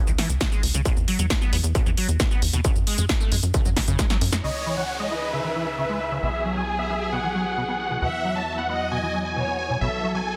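Huge, detuned supersaw chords arrive up front at 4.4 s in this emotional, soaring uplifting trance excerpt in C# minor at 134 BPM, joined by distant symphonic violins with tape echo, dark woody studio strings and a downlifter, all riding over a squelchy, resonant acid arpeggio with phaser and delay, a tight sawtooth sequencer bass, and a distorted, layered kick with a punchy analog snare, hi-hat and shaker that drop out around a drum fill at 4.0 s, moving through chords like Esus2, C#madd9 and Bsus4 under a dense, heavily limited master.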